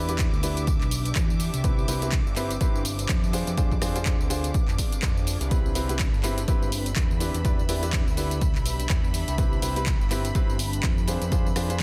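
Euphoric and joyful, this piano house passage moves at 124 BPM in 4/4 with a swung sixteenth-note feel, cut from a longer piece in C major. A clear upright piano carries the riff with woody, intimate tone, audible action noise and short sustain, treated with dub echo. Underneath, a fat analog bass built from detuned sawtooth and square waves adds thick weight, its filter sweep and moving notch shaping the sound. A layered house kit of handclaps, hi-hat, rim click and tambourine enters at 0.1 seconds, and a punchy electronic kick follows at 0.2 seconds, sitting up front. A lush bowed string section with vibrato holds sustained chords in the background beside a blurred granular cloud pad that adds an evolving texture, with sidechain pumping on the piano, bass, strings and pad. The harmony cycles through Em7, Cmaj7 and Fm6, and the dense, heavily limited master keeps the mix tight and dry.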